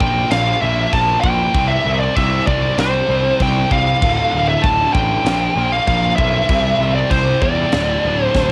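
Dry, cassette-recorded and homemade, this short cut from a longer heavy metal piece has an aggressive, epic mood at 97 BPM in 4/4, with a half-time feel running throughout its 8.5 seconds. Up front, a dark, high-gain lead guitar carries the melody between C5 and A5, its distortion riding over the power-chord movement from Bb5 through C5 to D5. Beneath it, a scooped, double-tracked rhythm guitar grinds out the riff from D2 to C4, bright and picked, its distorted tone colored by a cassette-tape grit. A growly, punchy fuzz bass sits prominently in the mix, overdriven and direct, spanning D1 to E2. The acoustic drum kit stays in the background with a polished, airy big-room character, tight kick, high-tuned snare, toms and a bright china cymbal, finishing with a drum fill at 8.3 seconds.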